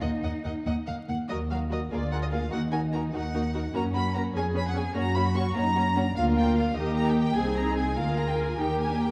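A dark production with the long, wet reverb of a scoring stage and a faint vinyl crackle frames this lively, cheerful classical-period movement for string orchestra in 6/8, cut from a longer piece. A warm, smooth violin section carries the melody over a second violin section's rich, focused line, while a lush, close viola section with expressive portamento fills the accompaniment and a distant cello section sits in the background. Up front, a double bass section with soft attacks and gliding portamento anchors the bass, and the minor-key harmony settles on a major chord at 8.6 s.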